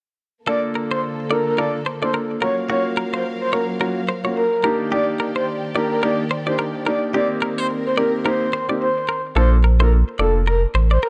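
A breathy, flute-like synth lead carries the melody with chorus and tape echo over a sunny, breezy afrobeats groove at 108 BPM in Bb major, as an up-front grand piano accompanies and lush, bowed studio strings hold Bbmaj7, Gbmaj7 and Ebmaj7 chords, a bright, twangy clean electric guitar picks a riff through tape echo, and a deep, full sub bass with octave arrives at 9.4 seconds in this excerpt from a longer piece.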